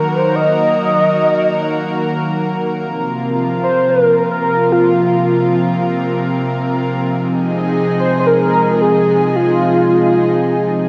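In free time, this cinematic, nocturnal synthwave fragment in F phrygian sets a velvety, wave-folded synth lead carrying the melody with chorus and tape echo over a thick, warbling unison pad holding sustained chords with chorus, moving from Ebm at 0.0 s through Bbsus2 to Fm7 at 7.2 s, all bathed in a lush hall reverb that gives a big arena sound.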